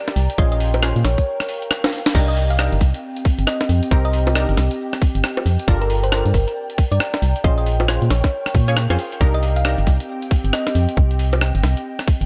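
Bouncy yet moody, this short two-step UK garage cut swings its sixteenths over a tight, up-front electronic kick and a gritty, pitched-up breakbeat kit of snare, hi-hat, rim click, bongos and crash, with a brief break at 1.3 seconds capped by a drum fill. A hollow, organ-like FM bass sits dark and forward beneath punchy, detuned sawtooth chord stabs coloured by phaser and delay, while a round, tine-like thumb-piano pluck carries the melody through chorus and digital delay. In the background, an ethereal airy pad holds sustained chords and a warbling, nostalgic lo-fi pad adds texture, both pumping against the kick, moving through minor ninth harmonies from Bbm9 to Cm9 and Gm9.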